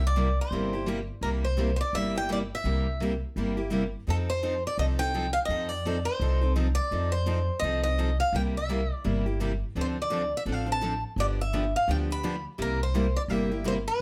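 A boxy, picked swing-style acoustic guitar carries the melody up front with a plate reverb, opening this lively jazz manouche excerpt at a brisk 169 BPM in 4/4 with a swung feel, set in C mixolydian. A woody, thumpy pizzicato upright bass on gut strings sits equally forward, while two picked steel-string acoustic guitars pick out accompaniment a little further back from 0.2 s, one with fresh strings and audible finger squeak, the other full-bodied and dreadnought-toned. The swinging progression moves from C7 to F7 at 4.1 s and turns through Dm7 and G7 before landing back on C7, all in a moderate studio room.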